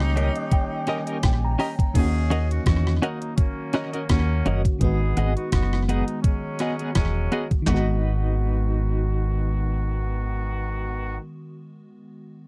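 Bittersweet and smooth, this lovers rock reggae excerpt in G# minor moves at 84 BPM with a lightly swung 16th-note feel, built on a deep, round dub bass and a thumpy, overdriven 8-bit drum machine of kick, rim click, hi-hat, handclaps and crash that drops out at 7.9 seconds. An edgy, punchy tenor saxophone with tape echo and scooped notes sounds only briefly at the start, while a loose, vintage horn section carries a second line, and a lush, dreamy FM electric piano with a soft pad layer, dressed in chorus, phaser and slapback echo, opens with a fill and plays on to 12.5 seconds. Clean, compressed twelve-string electric guitar stabs with tremolo enter at 0.2 seconds, and the dry, close 1970s-style studio sound keeps the bass, drums and guitar up front over chords moving from D#7 to D#m7 and G#m7.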